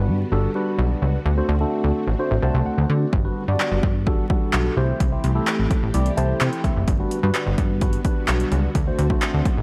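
A clean tine electric piano with phaser, warm string-machine violas with ensemble chorus in the background and a plucky, detuned analog bass all pump together from the start of this carefree, euphoric dance-pop passage in G major at 128 BPM, adding an electric piano fill at 2.2 seconds before a punchy, overdriven analog drum machine of kick, handclaps and hi-hat enters at 3.1 seconds, with another fill at 5.9 seconds, moving through Gmaj7, D7 and C6 under light reverb and a bed of vinyl crackle.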